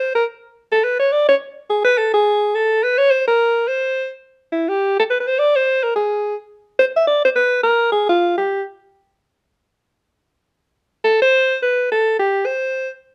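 A dark, warm studio sound with moderate reverb frames this playful, relaxed swing jazz excerpt, where a clear, punchy alto saxophone with vibrato and a smooth top plays a forceful solo up front from 0.0 to 8.6 seconds and returns from 11.0 to 12.9 seconds.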